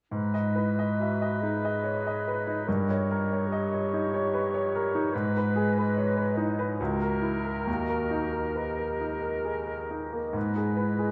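Brooding and tragic, this romantic passage for piano and orchestra, cut from a longer piece, unfolds in a rubato 3/4 at 66-74 BPM in G# minor, tuned to A4 = 442 Hz. A bright, brilliant grand piano carries the melody up front with long sustain, while a warm oboe with light vibrato and a soft attack, a dark, smooth-topped clarinet in the background, and an airy small flute group with vibrato supply second lines from 0.1 to 11.1 seconds. A wet scoring-stage reverb of 1.7 seconds gives the mellow, shadowy mix its depth as the harmony moves from G#m through D#7/G and A#dim/C# to D#, settling back on G#m at 10.4 seconds.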